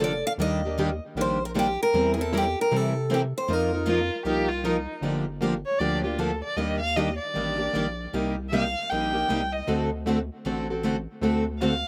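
Virtuosic and swinging, this cut from a longer piece of jazz manouche runs at 155 BPM in 4/4 with a strong swing on the eighths, settling into G minor from 5.0 s. A bright, fresh-stringed picked steel-string guitar carries the opening melody, up front with a slapback echo and a faint finger squeak, before it drops out at 4.9 s. Beneath it, two picked steel-string guitars hold the accompaniment throughout: one dark and boxy with a parlour character through a pickup, the other crisp and concert-toned. A rubbery, hollow synth bass with a square-wave pluck and a dark, resonant sustain bounces along underneath. The violin slips in at 3.9 s and takes over as soloist from 5.0 s, sounding warm and expressive with vibrato, portamento and a smooth top, moving through Gm7, Ebmaj7, Cm7 and D7. The sound is dry and close, with little reverb and an open-air feel.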